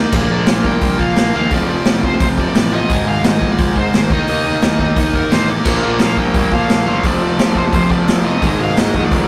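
A rough rehearsal-room recording with tube saturation and a small room's reverb carries this energetic, rowdy punk rock excerpt at 174 BPM in 4/4, where a nasal, dark lead guitar with a parked wah plays the melody over a bright distorted guitar riff, a double-tracked, compressed overdriven guitar, a growly fuzz picked bass and a saturated, gritty, up-front garage drum kit with a boomy kick and crashing cymbals, before a second bright garage guitar joins the riff at 5.6 seconds over chords moving from Bb5 through F, Ab and Eb5.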